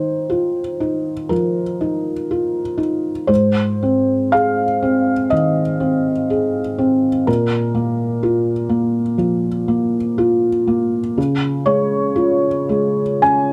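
Neoclassical minimalist piano in A-flat major, this intimate, tender fragment moves at 61 BPM in 4/4 with a rubato feel, and its tuning sits at A4 = 442 Hz. A felt-muted upright piano plays solo for the full 13.5 seconds, ranging from Ab2 to Ab5. Its tone is soft and mellow, with the thick felt muting the hammers and the mechanism's action noise clearly audible. The harmony moves through Ebsus2, Ab at 3.3 seconds, Bb5 and then Db at 11.2 seconds. Close, detailed microphones and a dry room keep the instrument up front, as though the listener were seated beside it.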